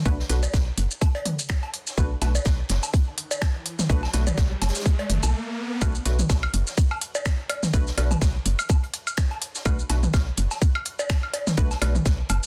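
Hypnotic and quirky, this minimal techno cut rides a swung 16th-note groove in 4/4, taken from a longer piece and held on a single Bm7 chord. A tight, layered electronic kick sits up front beside a woody, round FM bass, whose dark, fast-attack, decaying notes pump against the sidechain. A clicky electronic kit of finger snaps, hi-hat and shaker adds a softly clipped snare, while a background acoustic kit played with soft mallets brings filtered hats, a medium-tuned snare and a natural hall character. Electronic cowbell, toms and woodblock, re-recorded in a small room, scatter dub echoes through the pattern, and a digital wavetable chord stab, crisp yet mellow with a detuned unison body and filter pluck, floats low in the mix with its own dub echo. An electronic riser climbs in from 3.2 seconds into a short break, and the drop lands at 5.8 seconds in a dense, heavily limited, mostly dry master.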